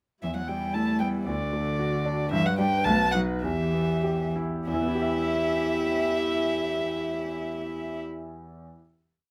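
A dark, woody violin carries the melody up front with vibrato and a sul tasto touch in this brief, restless classical-period movement for piano quartet in E minor, a quick 2/4 played with urgent rubato. The warm cello doubles the tune at the octave and the viola holds airy, soft-edged sustained chords, while the clear concert grand lays down broadly spread broken chords with deep bass. The pace slows from 1.8 to 4.7 seconds into a final chord, and the piano rings on alone until 8.9 seconds, all heard through close, detailed microphones in light reverb.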